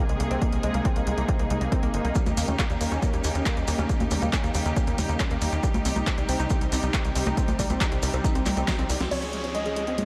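A dreamy, reverb-soaked mix with a huge ambient space gives this short cut from an uplifting trance piece in Ab major a euphoric, soaring air at 138 BPM in a straight 4/4. A clear symphonic string section holds sustained, intensely bowed chords with light vibrato and a smooth top, while a lush, detuned unison pluck spins arpeggios through analog chorus and a diffuse ambient delay, both pumping under sidechain along with a tight, driving sawtooth sequencer bass. A punchy analog electronic kick sits up front from 0.4 seconds, joined by a layered big-room kit of congas, crash cymbal, handclaps, hi-hat and a huge snare, and grainy, vintage maracas tuck into the background from 2.1 seconds. The harmony moves from Abadd9/C through Eb7 to Cm before a drum fill and a band accent land the change to Dbmaj7. At 9.1 seconds a bright, full-bodied supersaw lead with phaser and low-pass filter enters in the background, a clear concert grand piano with deep bass and long sustain adds a second line, and an electronic downlifter joins them.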